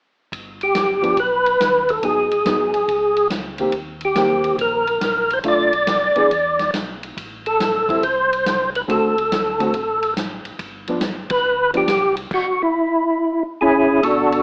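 This excerpt has the sound of an AM radio, set in a moderate club reverb, with a bluesy, greasy soul jazz organ trio swinging at 140 BPM in 4/4. A fat, lightly overdriven tonewheel organ with percussive third-harmonic attack, key click, chorus vibrato and slow rotary speaker carries the melody up front, while a round, dark organ bass with its own slow rotary hums in the background and a punchy, roomy big-band drum kit of kick, medium-tuned snare, hi-hat, ride and crash drives the swing. A clean, fingered hollow-body electric guitar comps from 1.0 until 11.9 seconds, just after a band accent at 11.2 seconds, and the chords move from G through Eb6, Bm7b5 and D7 to G7 before a break and a closing C#m.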